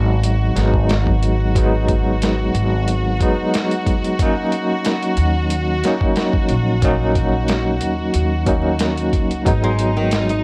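A barky, bell-like tine electric piano sits up front in this dark, smoky trip hop excerpt, its tremolo and tape echo coloring the minor-seventh chords above a woody, pizzicato upright bass and a gritty, overdriven sampler-style drum kit with a thumpy kick that comes in at 0.2 seconds. A close, biting studio violin section holds sustained chords with light vibrato, and a bright, fingerpicked flamenco guitar slips in with delayed arpeggios at 9.6 seconds. The lightly swung groove is bathed in studio reverb and the worn character of old cassette tape, with vinyl crackle and warbly pitch drift.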